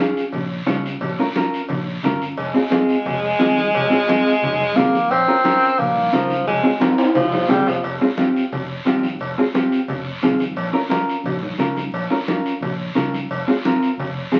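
Fiery and passionate, this cumbia fragment is cut from a longer piece and moves in a straight four. A mellow, dark electric guitar sits up front with clean, fingered, compressed accompaniment, while ringing, medium-tuned congas played with soft hands and a raspy guiro drive the latin percussion from the first moment. A fingered electric bass with a direct, amped tone joins almost at once, along with metal-shell cowbell and timbales that sound distant, as if in a large room. A clear tenor saxophone with vibrato enters at 2.4 seconds as an up-front second line in a pop style and stops at 7.8 seconds, just as a drum fill ends, when the music moves into its second section over the same Bbm and Fm chords. Wet studio reverb colors the mix, and the sound is that of a very old 78 rpm record, with vinyl crackle and dulled highs.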